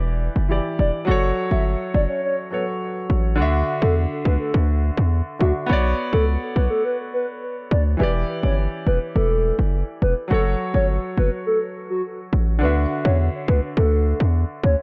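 A clear grand piano and a punchy, heavy 808-style bass sitting up front open this tough, sultry dancehall excerpt at a straight 104 BPM, cycling through Em7, F#m, Dadd9 and Bmadd9. At 0.8 seconds a hollow, woody, clarinet-like synth lead takes the melody, its soft, warbling, vintage tone thickened by chorus and vibrato and trailed by dub echo. The mix is echo-heavy with light reverb, and the bass dominates beneath the quieter piano and lead.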